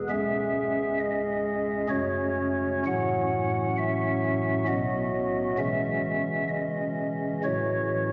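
Majestic and reverent, this brief classical chorale-style excerpt for solo pipe organ moves at a rubato 66 BPM in 3/4, its stopped flute stops sounding soft, hollow and mellow with a touch of chiff and tremulant in an up-front baroque voicing spanning C#1 to F#5, tuned to A4 = 437 Hz, as it passes through C#m, F#m, B and a closing F#m7/A inside a cathedral reverb that lingers for 5.1 seconds.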